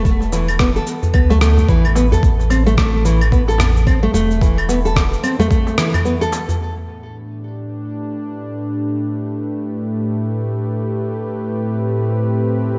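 A swung sixteenth-note groove of gritty, overdriven sampler-style kick with a thumpy punch, overdriven shaker, claves and rim click, and a deep clay-shell darbuka in the background drives this mystical, hypnotic organic downtempo piece, where an up-front fingerpicked nylon-string guitar plays arpeggios with delay and slapback echo over a round, pumping sine sub bass until a break at 6.0 seconds, after which a smooth, detuned sawtooth analog pad with chorus and sidechain pumping holds sustained chords from 6.6 to 12.8 seconds, the mix sitting in a big concert-hall space with a dark, rolled-off top end.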